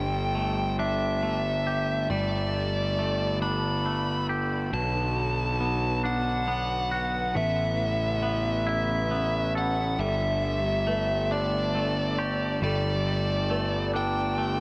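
Euphoric, soaring rock excerpt in a slow 6/8 at 46 BPM in G lydian, where an up-front, compressed fuzz lead guitar carries the melody with digital delay over a punchy, overdriven bass, clean twangy electric guitar arpeggios, earthy bowed chamber strings holding sustained chords in the background, and a felt-muted, boxy upright piano adding delayed arpeggios from 10.0 seconds, all moving through Gsus2, Bm and Aadd9 in light studio reverb.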